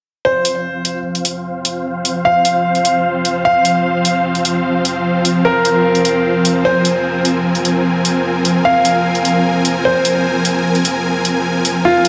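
A clear, intimate grand piano carries the melody from 0.2 s with audible action noise and a long, delay-tinged sustain, over huge, lush detuned supersaw chords with a sub octave that sweep through a low-pass filter on an F5 chord. Overdriven, bright electronic hi-hats join at 0.4 s in a small room ambience, driving this menacing, aggressive heavy wobble dubstep in F minor at 150 BPM with a half-time feel. The parts sit up front in a wet digital room reverb, and the passage is cut from a longer piece.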